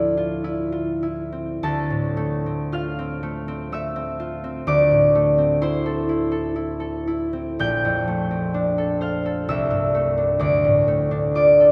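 A solo concert harp, warm, ringing and up front, carries this gentle, wistful classical fragment in D minor, fingerpicked across a range from Bb1 to G6 at a rubato 48-65 BPM in 3/4. Its harmony drifts from Dm9 through C69/D and Bbmaj9 to settle on Dmadd9 near 10.4 seconds, all bathed in a wet church reverb.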